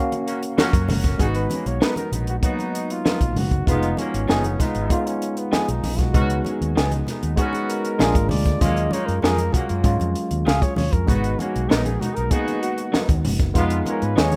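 Set in a straight 4/4, this silky, cinematic 1970s-style soul passage opens with a band accent before a flugelhorn solo takes over at 1.2 seconds, its punchy tone smooth on top with light vibrato and a touch of analog delay. A dry, up-front cocktail drum kit with a high-tuned snare and punchy kick anchors the groove alongside a warm, amped fingered bass, very quiet ringing congas played with soft hands, and a worn, slightly out-of-tune tine electric piano, lightly overdriven through its built-in speakers. A mellow horn section adds soft-attack, jazz-style stabs with delay, while an electric guitar through a small old amp plays a compressed, slightly broken-up picked riff bathed in spring reverb, and the whole mix has the rough feel of a home demo in a small room.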